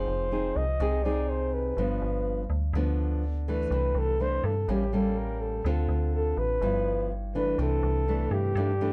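A breathy flugelhorn carries the melody up front, its dark, whispered tone close-miked and intimate, with soft attacks, scooped notes and vibrato in a jazz-style solo voice. This sophisticated, sunny bossa nova moves at 124 BPM in a straight 4/4 in C major, and the clip is cut from a longer piece. A thumb-plucked nylon-string guitar supplies acoustic, classical-leaning accompaniment with a warm tone, while a metallic FM bass sits forward with a digital, fast-attack sound whose notes decay. All three parts play throughout the 8.9-second clip, moving through Fm7, G7, C69, A7b9, Dm7 and G13 before the progression returns to C69 at 7.6 seconds as the opening section begins again. Light reverb and a dark, warm production round out the trio's sound.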